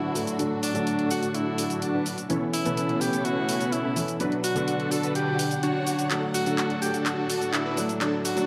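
Set in a lush, moderately reverberant hall with a dark, filtered production, this anthemic, uplifting festival progressive house passage is cut from a longer piece and unfolds as a single build-up. A huge, detuned supersaw carries the riff, its thick, compressed body sharpened by a fast attack and shaped by a low-pass filter sweep that runs throughout. Alongside it, a bright, punchy alto saxophone sits up front and sings the lead with pop-style vibrato, trailed by dub echo. A mellow grand piano with audible action noise plays the accompaniment, while a bowed symphonic string section holds soft-attack sustained chords, moving from D through Aadd9 and Bm back to D. The layered, overdriven electronic drum kit enters at 0.2 s with cabasa, handclaps and hi-hat, breaks into a fill at 6.1 s, and a barely audible riser emerges at that same moment.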